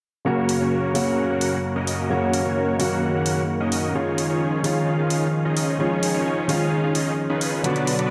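A dreamy, reverb-soaked mix places this short excerpt of festival progressive house in a lush digital hall, giving it an anthemic, uplifting glow. At 130 BPM in a straight 4/4 and in F# major, a soft, felt-muted upright piano opens at 0.2 seconds with mellow, intimate accompaniment trailed by a diffuse ambient delay. A thick, warbling vintage pad follows with slow-attack sustained chords and a long release, its bright detuned sawtooth tone shimmering with chorus while a filter sweep runs across it. Up front, a huge, dense supersaw riff of detuned sawtooth and triangle layers with a sub octave carries the hook, heavily compressed, touched with vibrato, low-pass filtered and echoed by ambient delay. A layered electronic hi-hat enters at 0.5 seconds with a small-room character, sitting low beneath the harmony as it moves from F# to C#add9 at 4.0 seconds.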